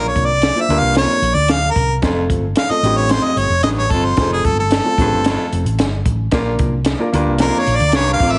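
A clear, up-front harmonica takes a jazz-style solo with scooped notes from the very start of this uplifting, uptempo 1960s-style soul cut at 112 BPM in Bb major, over woody upright piano, a raspy, gritty baritone saxophone riff set back in the room, and a round, dark hollow-body electric bass, joined at 0.2 seconds by a compact cocktail kit with a high-tuned snare and punchy kick, while a lush, bowed violin section slips in distantly at 7.4 seconds, the mix carrying a heavily compressed, radio-like sound with light small-room reverb.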